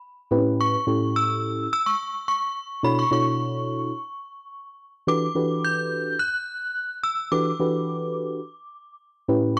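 This funk excerpt moves at 107 BPM in a straight 4/4, with a danceable, funky mood in E dorian. A mellow FM electric piano carries the accompaniment from 0.3 seconds, its soft, round and dark tone given a warbling chorus and a fast attack that decays. At 0.6 seconds a synth chime joins with the melody high above, its inharmonic, ringing voice thickened by ensemble chorus and a slapback echo, with a long release. The harmony moves from A9 to Bm11 and on to Em11. Both parts sit up front in a dry, close, 1970s-style studio sound touched by light reverb.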